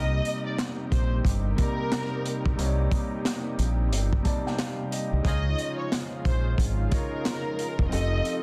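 A dense, heavily limited mix with light reverb carries this dark, gritty boom-bap hip-hop excerpt at 90 BPM, swung on the 16ths, moving from Cm7 through Dbadd9 to F7. A deep, round dub bass sits up front beside a crunchy breakbeat kit of tight kick, medium-tuned snare, handclaps and hi-hat that enters at 0.3 seconds, while a mellow vintage baby grand piano with long sustain accompanies and a thick, warbling sawtooth pad holds chords in the background with chorus. Over this, a distant bowed violin section carries the melody with vibrato, portamento and delay, and a roomy horn section adds brief stabs at the start and again at 5.3 seconds.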